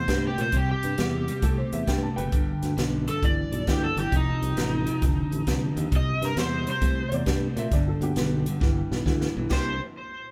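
Electric blues shuffle at 134 BPM in C major, soulful and laid-back, with a swung 4/4 feel, heard as an excerpt cut from a longer piece of a band playing live in one room. An overdriven slide guitar carries the melody through digital delay over a clean, compressed electric guitar riff with spring reverb, a bright, growly fingered bass and a punchy, polished big-band drum kit sitting up front, while a dark, woody upright piano with audible action noise and a slightly detuned tone adds a second line from 1.4 to 3.0 seconds and again from 7.1 seconds. The chords move from C through G and F7 to Cadd9, and a drum fill at 8.6 seconds leads toward a closing C9.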